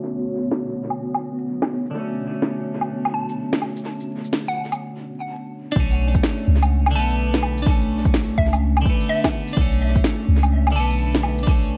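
A bright, twangy twelve-string electric guitar and a cloudy, blurred granular pad open this nocturnal, wistful future garage excerpt, both passing through a filter sweep while sidechain pumping makes them breathe, and the guitar adds phaser and analog delay. An overdriven electronic shaker, woody snare and woodblock sit up front with dub echo, giving a swung 16th-note feel, and at 3.1 seconds a hollow, bouncy square-wave pluck enters with a mellow melody coloured by chorus and more dub echo. The pad drops out at 4.8 seconds, opening a short break. At 5.8 seconds a deep, overdriven electronic kick and a soft, round 808-style bass arrive up front, the bass also pumping with sidechain. Vinyl crackle, an echo-heavy mix and a dark low-pass filter wrap the whole piece in a hazy, late-night ambience over a single Bm7 chord.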